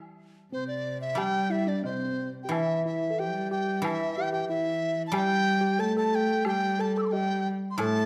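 A moderate recital-hall reverb surrounds this short, festive and pastoral Chinese chamber excerpt in a free, rubato 2/4. A ringing, silvery guzheng, played with fingerpicks, opens alone at 0.0 seconds. At 0.5 seconds an up-front large dizi enters with a buzzing-membrane, bamboo melody, airy and tongued with vibrato, alongside an intimate, dark sul tasto cello and a mellow, clean tine electric piano heard through built-in speakers, while a bright woodblock joins in the background at 1.2 seconds.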